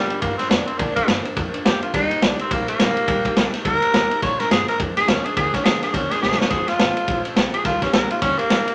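Rowdy and rollicking, this short cut from a longer rockabilly piece races along at 210 BPM in 4/4 with a swung eighth-note feel, centred on Bb mixolydian. A raspy tenor saxophone takes the solo up front from the start, its bright, gritty tone carrying vibrato across a range from G3 to Db5. Behind it, a picked steel-string acoustic guitar sits in the background with audible finger squeak, while a woody, thumpy upright bass played pizzicato on gut strings anchors the low end. A vintage drum kit enters at 0.1 seconds, placed up front with a punchy kick, a medium-tuned snare and dark ride cymbals under a rolled-off top, and it throws in a fill at 6.2 seconds. The chords move from Bb to Eb, back to Bb, then to F and Eb, all set in a moderate club reverb.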